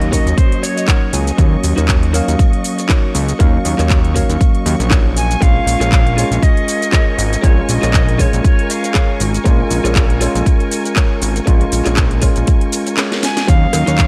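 Cosmic and sleek, this nu-disco passage, cut from a longer piece, moves at 119 BPM in 4/4 with a light 16th-note swing, sitting in Eb minor over Ebm7 and Bbm7 chords. A punchy, up-front electronic kick anchors the groove alongside a house kit of cracking snare, metallic hats, shaker and handclaps, both tape-toned and re-recorded in a small room, while a fat, detuned sawtooth analog bass with a saturated filter pluck drives the low end. A tine electric piano and a rich, bowed string section hold the harmony, each breathing with sidechain pumping. A reedy silver concert flute with vibrato and a soft attack carries the melody in short phrases: briefly at the opening, again from 5.2 to 9.2 seconds, and once more at the close. A bright, direct-recorded clean electric guitar picks a riff through lush chorus in the background, adding a fill near the start. A drum fill arrives at 13.0 seconds, and a dry cowbell sounds briefly near the end, all in a close, almost reverb-free mix.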